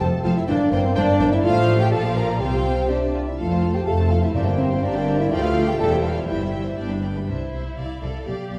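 In a straight, brisk 2/4 at 124 BPM, this cheerful, spirited classical-period movement for symphony orchestra settles into C major from 5.3 s, with a smooth, lush violin section carrying the melody in the background while a rich, focused second violin section and an airy, hollow flute share the second line. A warm French horn section sits up front with sustained chords, supported by mellow bassoon and an expressive viola section. A dark, soft-attacked cello section and a clear double bass section anchor the bass, very quiet timpani play from 2.4 to 5.0 s, and a wet recital hall reverb places the ensemble further back in the room.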